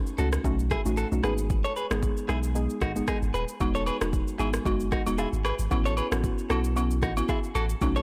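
A deep, punchy sub bass with a pitch-drop attack sits up front in this sunny, breezy afrobeats passage alongside an overdriven electronic drum kit with a deep kick, rim click and shaker, a twangy, bright clean electric guitar riff bathed in spring reverb and delay, and a dark, detuned pluck with chorus, while agogo bells and woodblock enter at 3.6 s, all within a blown-out, overdriven mix.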